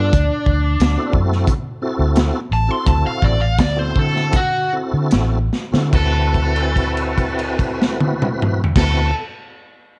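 A bright, overdriven guitar melody opens this swaggering, rollicking straight-eighth soul blues in D mixolydian, over a full tonewheel organ with key click, chorus vibrato and slow rotary speaker, and a round, foam-muted fingered electric bass. The tempo moves between 72 and 90 BPM and slows over the first stretch, while a crunchy, up-front breakbeat kit with dark cymbals, a tight kick and a gritty, rolled-off top plays a fill from 5.5 to 5.9 seconds. There the harmony moves from D9 to D13, and a note is held until 8.8 seconds in a small room ambience in this excerpt from a longer piece.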